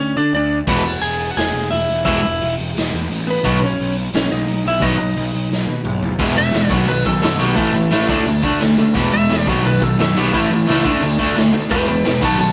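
A bright, overdriven electric guitar sits up front, hammering a picked riff from 0.7 seconds in this rowdy, rebellious punk rock excerpt, joined by a warm, sludgy distorted guitar adding a second overdriven, picked riff. Underneath, a fuzz-soaked picked electric bass growls from the very start, alongside a slightly broken-up, compressed lead guitar carrying the melody. The raw garage drum kit joins at 0.7 seconds with a punchy kick, a medium-tuned snare, hi-hat, crash and toms, its dark, rolled-off top ringing in a stone room. The opening stretch rides a half-time feel until a drum fill at 5.5 seconds kicks the band into full stride, and at 6.2 seconds the lead guitar breaks into a solo over a rapid cycle of E, B, A and D chords. Light reverb and a rough rehearsal-room sound keep the whole take loose and scrappy.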